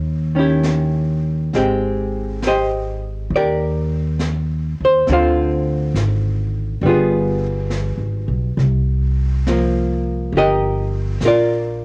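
Jazz ballad in C minor at a slow 68 BPM with a swung eighth-note feel, intimate and melancholic, this fragment of a longer piece moves through rich altered chords toward Cm11. A woody, pizzicato upright bass on steel strings opens at 0.0 s, sitting up front in the low register. At 0.4 s it is joined by a dark, clean, picked hollow-body archtop guitar with plate reverb, and at 0.6 s by a soft brushed kit with a high-tuned snare and hi-hat, the guitar and drums carrying a cassette-tape color in a small, homespun booth sound.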